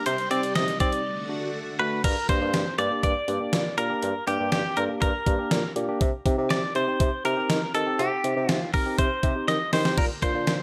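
Cool and driving, this synth-pop excerpt in G minor at 121 BPM puts a twangy, compressed clean electric guitar melody up front over a dark bassoon bass with light vibrato, bright tine electric piano accompaniment and a thumpy 80s digital drum machine with gated reverb on the snare, while a swirling, phased string machine holds sustained chords until 2.0 s and returns at 10.0 s, after a drum fill at 9.5 s, all set in a light reverb.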